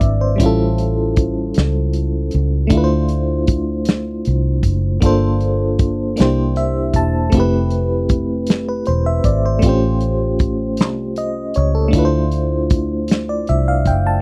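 A dry, close 1970s-style studio sound with light reverb frames this sensual, intimate slow six-eight R&B fragment, cut from a longer piece. Up front, a muffled, lo-fi soul drum kit with a tight kick and medium-tuned snare sits beside a dark, round, foam-muted fingered electric bass, while an FM electric piano with tremolo and a fast-attack, decaying tone voices extended chords such as Dm9, Gm11 and Fmaj9#11. The electric piano steps out with a brief fill from 6.2 to 7.3 seconds, and the progression later reaches Dm9 again at 11.9 seconds.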